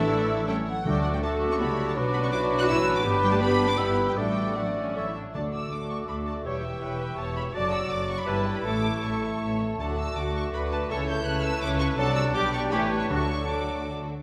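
A lively, cheerful classical-period movement for symphony orchestra opens at once in full, in a brisk, rubato 3/4 at about 151-167 BPM in D major, with a lush, expressive violin section carrying the melody high above, shaped with vibrato and portamento. Beneath it, a clear clarinet, a mellow cor anglais, a second, richer violin section and a pure-toned small flute group add second lines, while a distant bassoon and a smooth viola section accompany, a very quiet French horn section holds sustained chords, a trumpet section adds stabs, and a woody cello section joins an intense double bass section on the bass. Timpani struck with hard mallets mark the opening, return briefly at 5.3 seconds and close the phrase at 13.1 seconds, within a wet concert hall reverb.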